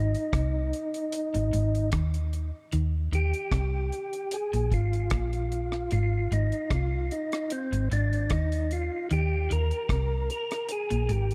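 A straight, laid-back 4/4 roots reggae groove at 75 BPM in Eb major, this short cut from a longer piece sets a dry, smooth acoustic drum kit of hi-hat, tight kick and rim click from 0.1 s under a round, foam-muted electric bass that sits up front with tube saturation, while a clean picked electric guitar riff with analog chorus stays dark in the background and a mellow, lightly overdriven percussive tonewheel organ carries the melody with third harmonic percussion, chorus vibrato, fast rotary speaker and dub echo, all in a small room over chords moving from Ab through Eb and Bb5 to a rootless Fmadd11/Ab.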